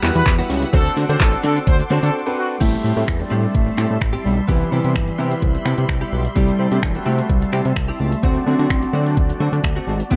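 Energetic yet bittersweet, this dance-pop excerpt drives along at 128 BPM in a straight 4/4, set in A dorian and moving from Emadd9 and D7 into a cycle of Am7, Cmaj7 and D7. Up front, a layered electronic pop kit with a knocking kick, metallic hats, crash, finger snaps, handclaps and shaker sits over a fat, detuned sawtooth analog bass with a fast, decaying attack and sidechain pumping. In the background, a clear grand piano with audible action noise and a soft, evolving supersaw swell of sustained chords both pump with the sidechain, while a bright, scooped, direct-recorded clean electric guitar picks a compressed riff through analog chorus. A distant, roomy horn section carries the opening melody from 0.2 s, joined briefly by a very quiet, hollow group handclap, before a short break leads into the next passage. At 2.6 s a mellow, close-miked bass clarinet takes over the melody in a jazz style with light vibrato, all within a dark, small-room ambience.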